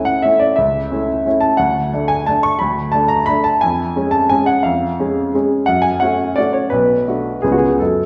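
A clear, natural baby grand piano rings through a wet recital hall, heard from further back in the room, with a 1.4-second reverb trailing its short sustain. This nostalgic, elegant classical waltz in 3/4 moves with rubato at roughly 155 to 189 BPM, the solo piano spanning B1 to C#6 and tuned slightly below standard pitch. Cut from a longer piece, the 8.1-second passage moves from A through D, C#/E#, F#m and Bm7 before landing on C#7.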